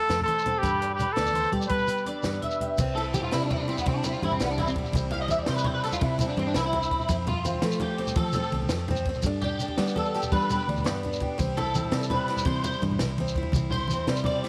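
A slightly broken-up electric guitar, up front with ensemble chorus and tape echo, spins arpeggios through this sunny 12/8 highlife excerpt, and a clean electric guitar solo arrives at 2.8 s after a bright trumpet with vibrato and tape echo carries the opening melody until 2.1 s, over a picked acoustic archtop guitar, a round, foam-muted fingered electric bass, a dry compact cocktail drum kit with dark cymbals, high-tuned snare, punchy kick and brief fills, a grainy shekere and low-tuned, thin-skinned congas, the whole band sitting in a moderate echo chamber reverb.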